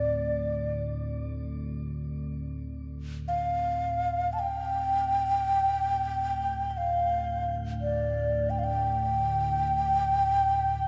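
Meditative and spacious, this free-time world piece, cut from a longer work, centers on a breathy, hollow xiao played up front with vibrato and tongued notes, its melody bathed in shimmer reverb. Beneath it a deep, ominous drone rumbles and warbles with a dark, vintage tone, while a pure quartz singing bowl rings in the background, struck with a wooden mallet and heard until 2.8 seconds. The whole sits in a wet, church-like reverb with a soft, rolled-off top.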